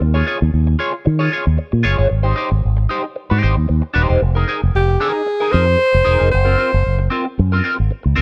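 Joyful and celebratory, this short disco excerpt at 114 BPM in Ab major sets a punchy, up-front fingered electric bass with an envelope filter and a slightly broken-up, picked electric guitar with wah against a chord cycle of Eb9sus4, Abmaj7, Fm7 and Gbmaj7#11, while a breathy, intimate alto saxophone with light vibrato and slapback echo slips in at 4.8 seconds for a brief jazz-style phrase that ends at 7.1 seconds, all in a small room ambience.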